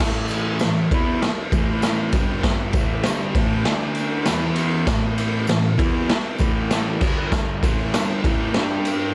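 A double-tracked fuzz guitar sits up front, playing a raw, picked riff around A5, G5, D5 and E5 power chords in this rowdy garage rock excerpt in straight 4/4. Beside it, a boomy, gritty garage drum kit with a medium-tuned snare, crash and ride cymbals sounds saturated and rolled-off on top in a small room. A jingly, dry tambourine tucked in the background adds bright shimmer across the roughly 9-second cut, all under light reverb.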